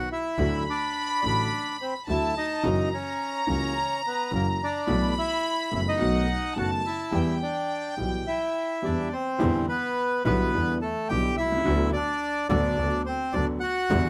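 A reedy, up-front bandoneon carries the melody in this melancholic, passionate tango excerpt, set in E minor at 107 BPM in 4/4 with a rubato feel. Beneath it, a bright upright piano supplies the accompaniment with a brilliant, woody, polished tone, long sustain and audible action noise. A studio violin section plays a second line high above, its gut-string, period-style tone carrying light vibrato, before it drops out at 9.1 s. A single bowed double bass anchors the low end, played sul tasto with an airy bow, soft attack and intimate closeness. The harmony moves from D through F#7, B7sus4 and B7 to E minor, and a second section opens at 9.4 s on Em7 before turning to Bm/D. Close, detailed microphones and light reverb keep the sound present and immediate, and the piece is cut from a longer work.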